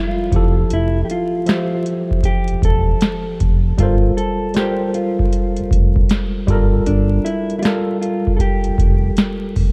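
Lo-fi hip hop in G dorian at 78 BPM, this nostalgic, hazy fragment of a longer piece moves with a swung 16th-note feel in 4/4. A tine electric piano carries the accompaniment, sounding worn, slightly out of tune and lightly overdriven through cassette tape, as if played through built-in speakers, and it sits up front. Over it, a mellow, dark, clean fingered electric guitar plays the melody through an analog delay. At 0.3 seconds a booming analog drum machine arrives with a deep kick, tonal snare and metallic hats, joined by a full, sine-like sub bass with octave that has a fast attack and sustained tone. The harmony moves from Fmaj9 to Gm11 and then Gm9, all set in a dark, warm production with digital ambience and vinyl crackle.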